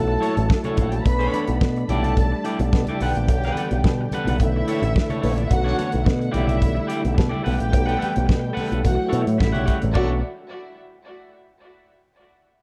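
A damped 70s drum kit with a fat snare, tight kick and dark cymbals drives this danceable disco excerpt in B minor at 108 BPM alongside a punchy picked electric bass through an envelope filter, sustained chords from a lightly overdriven percussive tonewheel organ with chorus vibrato and slow rotary speaker, a woody string section playing a second line with tape echo, a twangy, slightly broken-up electric guitar with spring reverb, and very quiet low-tuned congas and a metallic cowbell, all moving through chords such as Bm9, A7sus4/B and Gmaj9 in a dark, dry production.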